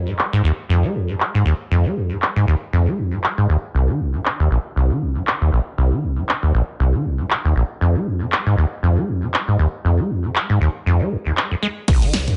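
A swung 4/4 groove at 118 BPM drives this trippy, gritty acid house excerpt, with a punchy analog drum machine up front supplying crash, handclaps, hi-hat, snare and toms, low-pass filters softening the snare, hats, cymbals and toms, and a short room placed on snare, clap and hats. Over it a squelchy, resonant sawtooth acid bass riffs from Bb1 to Ab3 with filter sweeps, a fast attack and mellow decay, dressed in lush chorus, sidechain pumping and digital delay. A punchy electronic kick lands up front only at 11.9 seconds, just as the section closes, all within light reverb and digital ambience.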